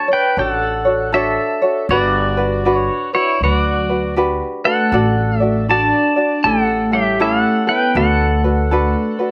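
The recording is dry and open-air, with barely any reverb, a clip from a longer Hawaiian piece in a dreamy, languid swing. The electric pedal steel guitar carries the melody up front, bright, twangy and compressed, played with fingerpicks and slide, and it blooms in volume swells through a slapback echo. Beneath it a tenor ukulele is fingerpicked lightly in an acoustic, warm voice, and a pizzicato upright bass on gut strings joins at 0.4 seconds with a woody, thumpy, dark low end. At 3.4 seconds a vibraphone with soft mallets adds a mellow second line, its metallic ringing tone shimmering with slow motor vibrato and carrying a boxy small-room colour of its own. The harmony drifts from Dmaj7 through Gmaj7, D/A and A7 before settling on D6 as the clip closes at 9.3 seconds.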